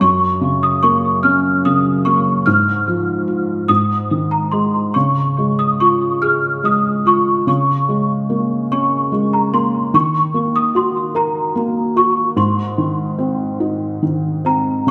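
A slow, rubato 6/8 pulse at 49 BPM (dotted quarters) gives this short lullaby an unhurried feel that is innocent and sleepy. A worn celesta carries the melody high in its range, between Bb5 and F6, its bell-like, delicate tone sweet but slightly out of tune, with an ensemble chorus and tape echo adding shimmer. Beneath it, a felt-muted upright piano plays the accompaniment from Gb2 up to Bb4, soft and mellow, with audible action noise that makes it sound intimate and close. Both parts sit up front and play together from the start to the end at 14.9 seconds, moving through gentle harmonies that begin on Gb and settle on Ab. The whole mix is soaked in a lush hall reverb with a 1.6-second tail, giving the children's piece a dreamy, floating quality, and it is cut from a longer work.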